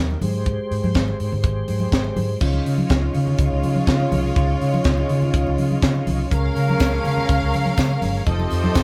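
A lightly reverberant, live-in-one-room sound carries this glamorous, danceable disco excerpt at 123 BPM, where a tight funk drum kit with a high-tuned snare sits up front alongside a round, foam-muted vintage electric bass, beneath smooth tonewheel organ chords with chorus vibrato and slow rotary speaker, close dry congas, a lush biting string section entering at 2.4 seconds, and a horn section of octave-doubled stabs joined by a very quiet jingly tambourine at 6.3 seconds.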